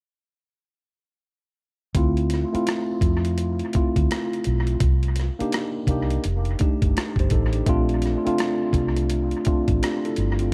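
A smooth, late-night neo-soul groove in D minor, this R&B fragment opens at 1.9 seconds with a worn, slightly out-of-tune tine electric piano and a boom bap sampler-style drum kit arriving together, both soaked in dub echo. The electric piano sits up front with a warm, clean tone through a combo amp, voicing chords that move from Dm9 to Cm7, F13 and Bbmaj9 between A3 and C5. The drums, pitched down and gritty, bring hi-hat, rim click and a thumpy kick with a compressed, small-room character. A dark, round, foam-muted fingered electric bass joins at 2.0 seconds, amped and up front, holding the low end between F1 and F2. At 84 BPM in 4/4 with a loose 16th-note swing, the whole passage rides an echo-heavy digital ambience until it cuts off at 10.5 seconds.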